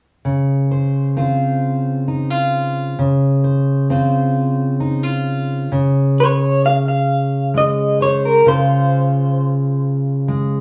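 An electric guitar through a small old amp, slightly broken-up and lo-fi with tremolo, carries the melody from 6.2 seconds over a full-bodied, fresh-stringed fingerpicked steel-string acoustic guitar that opens on a Dbmaj7 at 0.2 seconds, giving this hopeful, intimate folk-pop ballad excerpt in Db major a slow 44 BPM lilt in 6/8 and the close feel of a band playing live in one room with moderate studio reverb.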